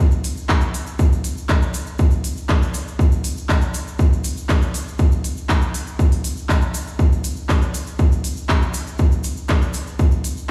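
A grainy, bright tube shaker heard close and dry opens this melancholic, dramatic techno excerpt at 120 BPM in a straight 4/4. A techno drum kit of handclaps and smooth hi-hats with sidechain pumping on the hats and cymbals follows, and then a punchy, up-front electronic kick enters to drive the groove, all set in a stone-room reverb as if played through a big sound system in a bare space.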